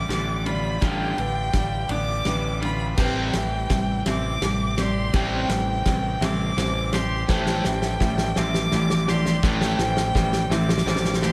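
A cinematic, melancholic post-rock passage in 6/8 opens with a smooth, distant bowed violin melody carrying slapback echo, set over a growling, punchy fingered electric bass up front, a crunchy overdriven guitar riff, twangy clean guitar arpeggios with spring reverb, the muted, intimate arpeggios of a felt-muted upright piano with audible action noise, and a very quiet pedal steel guitar holding sustained slide chords with volume swells. A loose, roomy indie drum kit with dark cymbals plays a fill throughout the build-up, and a bright overdriven electric guitar riff joins, very quietly, at 3.0 seconds.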